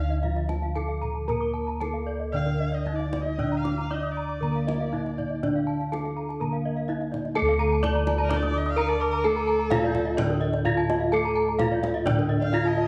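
A straight 4/4 pulse moving between 114 and 128 BPM drives this hypnotic, brilliant fragment of Balinese gamelan in D pelog, tuned slightly low to A4 = 438 Hz. Bronze metallophones carry the melody between D4 and D5 and spin two high arpeggio lines. Horn mallets give some of these a bright, airy ring, and paired tuning sets up shimmering beats. Beneath them, a lower metallophone struck with wooden mallets plays a dark, smooth accompaniment, while up-front bossed gongs hit with padded beaters supply a round, mellow bass. A clear, distant erhu bows a second line from A4 to F5 with vibrato and portamento, and a tight, band-limited kendang played with hard hands adds percussion from 0.2 to 12.5 seconds. The wet recital-hall reverb and dark, warm production lend the whole a dusky sheen as the music moves into a new section at 7.4 seconds before the cut at 12.9 seconds.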